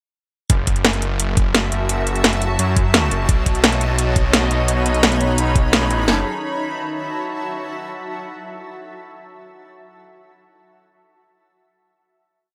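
Up-front layered electronic drums with a knocking kick, cracking snare and metallic hats drive this short, aggressive, mechanical piece of dark technical drum and bass from 0.5 seconds alongside a thick, saturated detuned saw bass in chopped phrases with sidechain pumping, soon joined by a cloudy, evolving granular pad, while intimate bowed studio strings enter at 3.3 seconds before the pad rings on alone through a final chord to 7.4 seconds.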